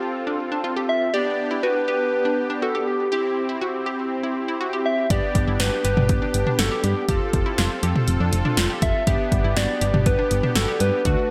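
Synth-pop at 121 BPM in G major, this nostalgic, bright excerpt opens with fat, detuned analog synth brass and a chorused, delayed analog pluck playing arpeggios, joined at 0.9 seconds by a gentle, warbling FM lead carrying the melody, before a round, dark FM bass and a punchy, overdriven analog drum machine with gated reverb on hi-hat, kick, snare and toms arrive at 5.1 seconds over chords moving from F through G, C and Fadd9, all set in a moderate hall ambience.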